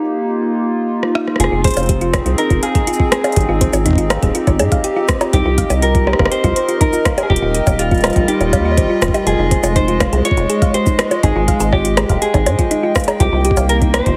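A hollow, flute-like pad opens this glitchy, cerebral IDM excerpt in F minor at 122 BPM, its detuned chords pumping under sidechain, before an overdriven analog drum machine of bongos, cabasa, cowbell, metallic hats and rim click drops a fill at 1.0 seconds. From 1.4 seconds a rubbery, resonant acid bass sits up front, a clean, fingered electric guitar carries the melody through 12-bit sampler grit and tape echo, and a round, tine-like FM pluck spins chorused, delayed arpeggios, soon joined by a thumpy, pitched-up, driven kick. Chords cycle through Fm7, Abmaj7, Cm7 and Ebadd9 under light digital reverb and a heavily compressed, radio-like finish.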